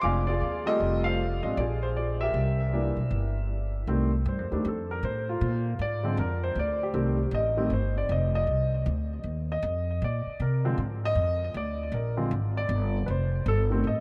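A polished grand piano with subtle chorus and delay and a woody, pizzicato upright bass open together in this playful, warm jazz piano trio fragment at a swinging 156 BPM in 4/4, with the piano moving into a solo at 3.9 s over F9 and Bb7 changes, both instruments up front in a dreamy mix soaked in a huge ambient reverb.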